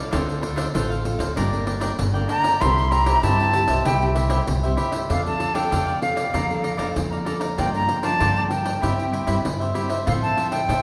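A pure, up-front silver concert flute with vibrato and a soft attack enters at 2.3 s over a lively, joyful samba and choro groove at 96 BPM in F major, carried by crisp picked cavaquinho, warm fingerpicked nylon-string guitar with audible finger squeak, woody pizzicato upright bass and a jingly, vintage-toned pandeiro, all ringing in the wet reverb of a recital hall in this passage cut from a longer piece.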